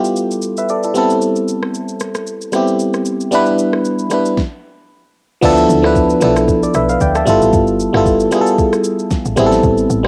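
A glassy, bell-like FM electric piano sits up front, its vintage tone warbling with chorus and cassette-tape coloring as it carries the chords from G13 through Am9 and Em7. This amapiano excerpt has a late-night, hypnotic mood and a gently swung 16th-note feel. Underneath, a smooth R&B drum kit with an electronic, produced sound plays throughout, pairing a soft kick and fat snare with rim clicks, shaker and crash cymbal, all roughened by overdrive and tape grit. After a brief stop at 4.4 s, the music drops at 5.4 s, where a woody log drum bass enters with punchy, percussive hits that decay into a mellow low end. The whole piece has the hazy feel of a home cassette recording with light reverb, cut from a longer piece.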